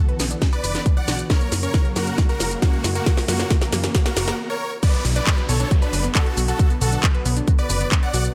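A straight 4/4 pulse at 136 BPM drives this emotional, uplifting trance excerpt in B minor, where a punchy, up-front electronic kick and a tape-warm house kit with cracking snare, metallic hats, handclaps, shaker and crash build through a drum fill and a short break before the drop lands at 4.8 seconds. Beneath it, a funky, plucky analog bass with a moving notch pumps with sidechain, while a huge, euphoric supersaw lead carries the melody through tape echo, and a round, detuned analog pluck plays arpeggios with chorus and dub echo in the background. A very quiet, lush unison pad holds sustained chords from Bm to F# and back, faint riser and downlifter effects sit beneath, and light digital ambience surrounds the mix.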